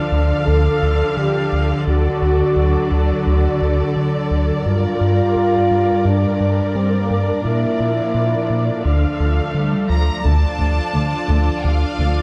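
Tense and futuristic, this cinematic blend of orchestra and electronics opens with a round, deep analog bass riff sitting up front beneath smooth bowed cellos, mellow French horns holding soft-attack chords, a silky detuned string pad with ensemble chorus, and expressive violas with portamento. At 9.9 seconds a lush violin section enters with a vibrato melody, and from 10.2 seconds a distant second violin line and woody double basses join in the background. Moderate scoring-stage reverb gives the dark, warm production its space in this short excerpt.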